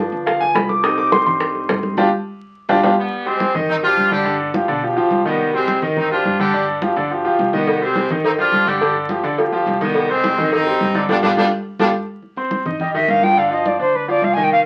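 A brilliant concert grand piano opens this driving, passionate salsa excerpt in C harmonic minor at 211 BPM, over a woody, thumpy pizzicato upright bass in the background, thick-skinned congas, and tight, hard-hand bongos and cowbell, before an up-front trumpet section takes the melody at 3.0 seconds and a breathy, reedy flute with vibrato carries it from 12.8 seconds, all heard through the crackle of a very old 78 rpm record.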